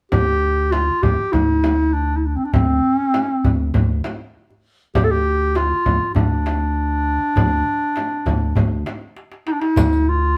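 Melancholic and soulful, this Arabic maqam ensemble piece in D bayati moves at 100 BPM in a straight 4/4, with a mellow, classically styled clarinet singing the solo melody up front between C4 and A4 over a dark, round, amped picked electric bass holding D2. Underneath, a crisp metal-shell darbuka sits very quiet and compressed beside a small, bright frame drum, and a drum fill from 9.2 to 9.8 seconds is followed by a brief flash of riq jingles at 9.8 seconds. The band plays live together in one room with light reverb, and the passage is cut from a longer piece.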